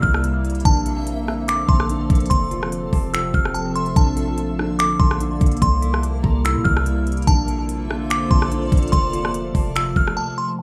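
Dreamy, blissful atmospheric cloud-rap in half-time at 145 BPM in Bb lydian, where a delicate, tinkling FM synth bell carries the melody with chorus and tape echo over a warbly, nostalgic tape-like pad, clean fingered electric guitar arpeggios, a reversed granular swelling texture, a deep boomy 808-style bass and an up-front R&B drum kit with a knocking kick, crisp hats, finger snaps and rim clicks, all in a rough home-demo mix of an excerpt cut from a longer piece, with the bass and drums stopping at 10.2 seconds for a brief break.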